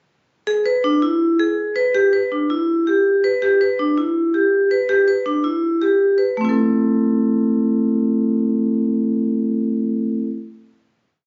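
Wistful and restless, this short rock piece at 163 BPM in A minor features a solo vibraphone playing from 0.5 to 10.3 seconds, with medium hard mallets and the motor off, tuned to A4 = 444 Hz. The close-miked, ringing, metallic ostinato sits up front and moves through E7, G and Em before landing on a final A minor chord held from 6.4 to 9.3 seconds. It is captured on a phone in the room with light club reverb, and the top end is rolled off above 7.6 kHz.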